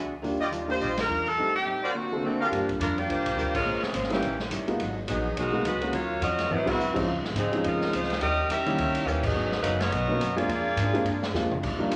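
Joyful and brassy, this swinging big band jazz passage, cut from a longer piece, puts an edgy, close-miked saxophone section up front carrying the melody from 0.7 s, while a clear trumpet section with a soft attack and smooth top adds stabs until 2.5 s. Beneath them, a woody pizzicato upright bass and a warm baby grand piano accompany through rich, extended jazz harmony, and a dark, clean hollow-body archtop guitar sits in the background. A natural-sounding drum kit with a punchy kick marks band accents and a fill around 6.5 s, and a wet studio reverb gives the ensemble a roomy glow.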